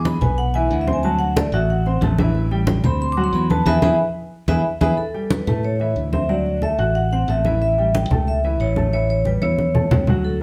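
Afro-Cuban jazz at a lively, danceable 183 BPM in straight 4/4, this excerpt from a longer piece features vibraphone played with medium mallets, motor off, carrying the melody in a solo through the first 5.0 seconds, with a band accent from 3.7 to 5.0 seconds, and a drum fill near the end at 9.4 seconds. A warm, intimate concert grand piano with audible action noise supplies chords moving from E7 and D9 toward A7, while a bright, growly fingered electric bass sits punchy and up front, and softly struck, ringing congas enter at 0.1 seconds. The band plays live in one room, with a large studio reverb giving the ensemble a roomy, wet sheen around the close, dry vibraphone and congas.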